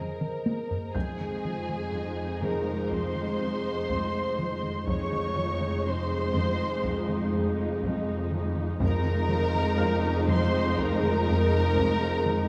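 Set in a moderate scoring-stage reverb, this eerie, uneasy suspense-film cue has veiled, con sordino violins carrying a high melody over a second violin line and close violas. A background cello riff runs from the start, and a dark double bass joins a very quiet cello bass line from 0.9 s. A warbling, lo-fi tape-like pad sustains chords through chorus, and a felt-muted upright piano adds a faint intimate texture with audible action noise. Heavy-stick taiko drums sit close and dry in the background, opening with a fill at 0.2 s, as the harmony shifts from Abadd9/F to Fm7 at 8.8 s.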